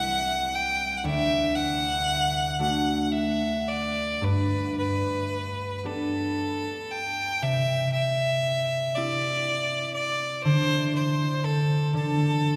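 Bathed in a long, wet cathedral reverb, this wistful, pastoral Celtic folk fragment in a slow, rubato 6/8 sets a single bowed fiddle up front, singing a focused melody with light vibrato, over a mellow, ringing concert harp whose fingerpicked accompaniment moves through C, D and G before settling back on C, with the chords giving way at 10.4 seconds as both instruments carry on to the end.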